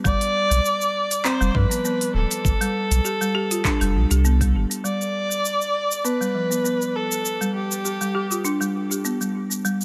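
Woody, dry marimba arpeggios played with hard mallets open this earthy organic downtempo excerpt at 100 BPM in G mixolydian, filtered and echoed with delay under recurring filter sweeps, alongside a round, pumping sine sub bass and a gritty, overdriven kick that both drop out by 4.7 seconds, while a bowed kamancheh with vibrato and portamento carries the melody until 8.7 seconds over a tape-tinged electronic kit of handclaps, crisp hi-hats and shaker, all set in light reverb as the harmony moves from a rootless F to G at 4.8 seconds.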